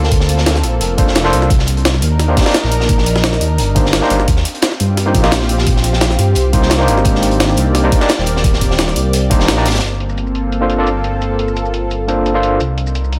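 A lush, detuned unison pad with chorus, phaser and sidechain pumping opens this rolling, dreamy liquid drum and bass excerpt over a deep, rumbling saw bass sitting up front and a crunchy breakbeat kit whose saturated, high-tuned snare sounds mid-forward and rolled-off. They are joined almost at once by a knocking, tape-warm electronic kick and a pitched-up, compressed jungle sampler kit with shaker. At 1.0 s a bright, barky overdriven electric piano enters through a combo amp, with medium tremolo, 12-bit sampler grit and delay, and after a band accent at 9.5 s the kick and breakbeat kit are gone by 9.8 s, leaving the jungle kit, bass, pad and piano in light reverb.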